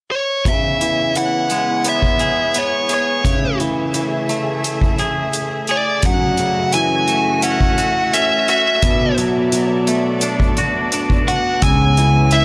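This short excerpt of cathartic, cinematic post-rock sits in a light studio reverb, with a bluesy overdriven lead guitar opening at 0.1 s to carry the melody in a distorted, up-front tone touched with analog delay. At 86 BPM in a straight 4/4, the band joins at 0.5 s: a twangy, clean electric guitar picks compressed arpeggios through spring reverb and delay, while a soft-mallet drum kit plays hi-hat and a boomy kick in a big acoustic room. Behind them, a rich studio string section holds bowed, vibrato-laden chords that sound focused yet distant. The harmony moves from C#m7 through Amaj7/C#, F#m7 and Bm7 before returning to C#m7. At 11.6 s a bright, amped fingered electric bass arrives on a low C#, and a mellow glockenspiel with rubber mallets adds airy, bell-like arpeggios on a high E in the background.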